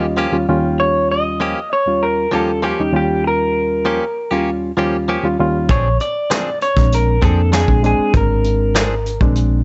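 This swaggering, soulful soul blues fragment opens with a barky, reedy electric piano fill, lightly overdriven and up front. Behind it, a clean, direct-recorded electric guitar plays twangy, scooped stabs. At 0.8 seconds a second electric guitar, run through a small old amp, takes the melody with a slightly broken-up, lo-fi tone, compressed and close. The piece moves at a straight 98 BPM in 4/4, in E-flat mixolydian, and sits on an Eb9 chord. At 5.7 seconds the harmony shifts to Bb9 as a round, foam-muted fingered bass enters alongside a vintage brush kit with a medium-tuned snare and a tight kick in a small room. Light reverb and a rolled-off top end give the short passage a dusky, old-record character.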